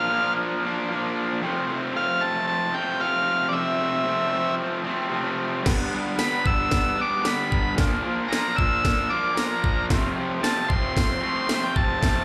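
Swaggering and rowdy, this short cut from a longer garage rock piece moves in a straight 4/4 and sounds like a live gig heard through a club's PA, with a light room reverb around it. A vintage, buzzy combo organ carries the melody in a clean tone with slapback echo, while a bright, overdriven electric guitar, picked and double-tracked, drives a low riff up front with its own slapback. At 5.7 seconds the drum kit comes in, a layered, produced sound with a knocking kick, cracking snare, metallic hi-hats and crashes placed up front. The harmony moves through Bb, F and G before returning to Bb and F. Organ and guitar play together from the start, and the full trio runs to the end at 12.2 seconds.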